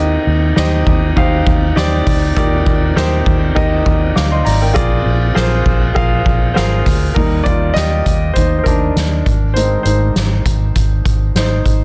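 A lightly swung sixteenth-note feel in 4/4 drives this short, hopeful piano-led pop clip, cut from a longer piece, with an anthemic lift. A clear, polished baby grand carries the accompaniment from the start, sitting up front, and at 7.2 seconds it takes over as the solo voice for the rest of the clip. Underneath, a vintage fingered electric bass with a foam-muted, round and dark amped tone gives a punchy low foundation. A soft-mallet drum kit enters at 0.3 seconds, its roomy studio sound pairing a punchy kick and medium-tuned snare with hi-hat, ride and crash, all struck with mallets. The harmony moves from Cm/Eb through Ebmaj7 and Bb7 before opening onto Eb and Ab in the second half. The mix is dry, with little reverb, and the master is dense and heavily limited in a modern style.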